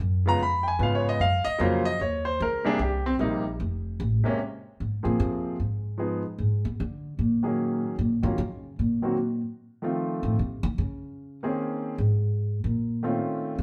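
Jazz piano trio music with a cool, late-night mood and a swung feel, cut from a longer piece and played live in one room with a moderate studio reverb. The clear concert grand piano, natural and deep in the bass, takes a solo from 0.0 to 4.4 seconds, while the pizzicato upright bass, woody and thumpy with steel strings, sits up front alongside it. From 4.4 seconds the bass steps out for its own solo through the rest of the recording, moving through minor-seventh and half-diminished harmony with brief passages where the chords drop away.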